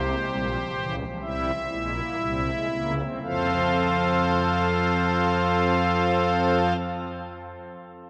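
In a straight 4/4 pulse at a slow 56-66 BPM, the music eases back over its opening seconds before settling into a second section at 3.2 s. This is a contemplative, solemn passage, cut from a longer baroque-style four-part fugue for pipe organ, tuned to A4 = 442 Hz. The organ plays alone using its strings celeste stops, with a soft, shimmering tone and a romantic voicing that sits up front and spans from Bb1 to F5. The harmony rests on C7 before resolving to F as the new section begins, and the organ sounds until 6.8 s. A wet cathedral reverb with a 4.7-second decay surrounds the instrument, lending the brief passage a spacious, contemplative air.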